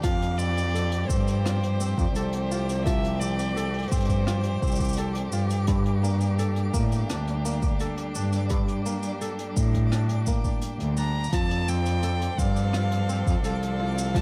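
Studio ambience surrounds this hopeful 85 BPM folktronica passage in F major, cut from a longer piece, where a veiled, muted cello bass sits up front beside a deep electronic kick and a dark brushed jazz kit with cabasa, hi-hat and rim click, while a mellow, fingerpicked kora rings through tape echo and a warm bowed string quartet holds sustained chords with expressive portamento, supporting an intimate, airy sul tasto violin melody with tape echo that plays from 0.0 to 5.3 seconds and returns at 11.0, all beneath a twinkling granular shimmer in the background.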